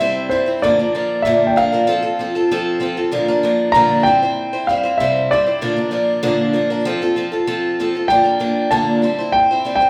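Hopeful and jangly, this short rock passage moves at a steady 96 BPM in a straight 4/4 and is cut from a longer piece. A dark concert grand piano carries the melody between C5 and Bb5, its mellow, intimate tone marked by audible action noise and a smooth, vintage character. Underneath, a picked steel-string acoustic guitar supplies accompaniment from Bb2 to C5, sounding bright and boxy with a parlour flavour and some finger squeak. Both instruments sit up front and play throughout the full 9.9 seconds, cycling through C, Bb and F chords. The band plays live in one room, bathed in a wet large-studio reverb of 1.5 seconds, with tuning set slightly low at A4 = 439 Hz.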